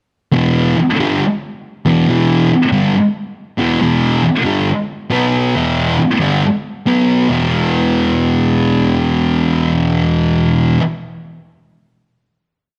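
A straight 4/4 rock pulse at 138 BPM drives this short, rowdy and raw piece for a lone thick fuzz guitar, electric, dark and double-tracked up front, which picks a power-chord riff moving between E5 and B5 from 0.3 seconds before landing on a final E5 chord at 7.3 seconds that rings out to 10.8 seconds in a moderate echo chamber reverb.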